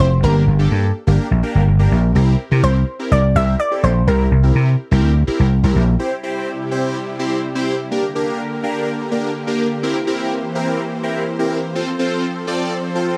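A dry, close 1970s-style studio sound frames this driving, bittersweet pop passage cut from a longer piece. An amped, round slap bass sits up front beneath a fat, detuned sawtooth polysynth with chorus and phaser, while an analog pluck with a noise layer and filter sweep, treated with chorus and slapback echo, carries the melody until 5.0 s. The bass drops out at 5.9 s, and from 6.0 s a lush, slow-attack supersaw pad adds sustained chords to a build-up moving through C, Gm, C7 and F, with the polysynth continuing alongside it.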